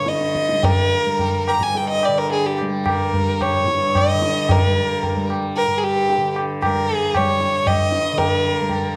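A clear, focused violin carries the melody up front, a single bowed line with vibrato that sits close and ranges high over the ensemble in an introspective, solemn Hindustani classical setting built on raga todi. Beneath it, a softly plucked tanpura holds a buzzing, shimmering drone in a low register, while low-tuned tabla with a short ring supplies the percussion in seven-beat cycles. The tempo gradually speeds up across this short cut from a longer piece, which runs about 9 seconds with all three parts sounding nearly throughout. A wet recital hall reverb surrounds the players, and the dark, warm production carries a vinyl crackle.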